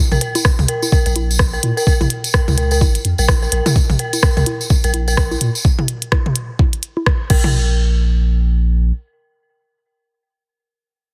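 A deep, punchy sine sub bass sits up front, with a pitch-drop attack and sustained notes between Ab1 and Bb2 that pump against the sidechain and carry on by themselves until 8.9 seconds. This sparse, quirky minimal techno fragment moves at 127 BPM in 4/4 in Bb minor, with a 59% swing on the 16ths. An eerie, inharmonic FM synth bell repeats a riff on Bb4, its fast, decaying tones thickened by chorus, tape echo and sidechain pumping. A soft electronic kick drum, tape-warm and re-recorded in a small room, is placed up front alongside a minimal click kit with clicky hats, rim clicks, a crash cymbal and a softly clipped snare. Layered electronic toms and congas and a jingly, bright acoustic tambourine fill out the drop, which runs until 7.5 seconds. A digital ambience surrounds the parts, and the dense, heavily limited master keeps the cut from a longer piece sounding modern.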